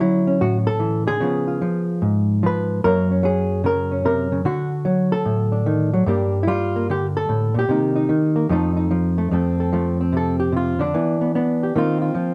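A clean, dark hollow-body electric jazz guitar plays alone from the start, fingered and compressed and sitting up front, moving through a swinging, playful solo jazz passage over chords such as Dmaj7, Gm7 and F7. At 9.3 s the piece shifts into a new section where the guitar takes a solo over F, Em7 and Ebsus2, cut from a longer performance. A moderate club reverb and a dark, warm production give the sound a warm glow.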